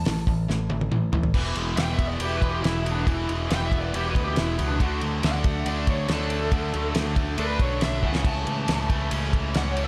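A big arena sound with a moderate hall reverb frames this sunny, driving classic rock excerpt, cut from a longer piece. A dry, damped 70s drum kit with a fat snare and tight kick sits up front beside a bright, direct picked bass, while a biting overdriven guitar with slapback echo and a cranked stack guitar in the background carry the riffs. After a drum fill from 0.5 to 1.4 seconds, the dark-toned lead guitar through a small cranked amp, thick with overdrive and slapback echo, takes a solo that runs to the end at 9.9 seconds.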